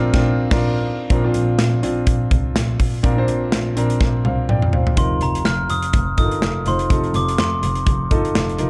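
Dark, lightly reverberant studio sound frames this anthemic, uplifting piano-driven pop excerpt at 124 BPM with a swung sixteenth feel: an up-front concert grand with deep bass carries the chords from Bbadd9 to F7sus4, a distant bowed double bass adds woody, nasal tone with vibrato, and a small-room acoustic drum kit with tight kick, snare, hi-hat, handclaps, toms and crash opens on a band accent and plays a fill at 4.0 seconds, while a bell-like glockenspiel struck with hard plastic mallets rings briefly at the start and returns with the melody at 5.0 seconds.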